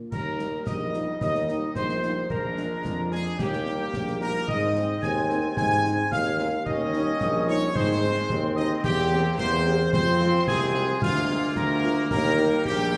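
Wet recital-hall reverberation surrounds this excerpt of a proud, rousing military-style march for wind band at 110 BPM in 2/4 and Eb major, with a roomy solo tuba up front on the bass, a warm trumpet section carrying the melody with light vibrato, a pure, expressive piccolo and a distant woodwind section on second lines, a bright trombone section holding sustained chords in the background, a very quiet, mellow French horn section entering at 0.4 s, and clash cymbals, concert bass drum and concert snare drum marking the march in a small-room acoustic.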